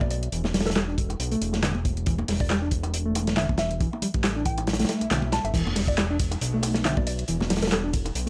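A dry, gritty hardware recording with light reverb carries this funky, swaggering breakbeat excerpt in E minor at 138 BPM with a swung sixteenth feel: a crunchy acoustic kit with dark cymbals and a punchy kick sits up front beside a fat, detuned sawtooth bass, while a tape-toned analog drum machine adds handclaps, hi-hat and ride cymbal and congas and bongos sit in the background. A reedy electric piano plays a riff through fast tremolo, overdrive, a low-pass filter and analog delay, and a woody, round FM synth pluck carries the melody with chorus, phaser, analog delay and an old-record sheen. After the kick drops out at 4.7 seconds, a very quiet swell builds into the drop at 5.5 seconds, where a sub drop lands.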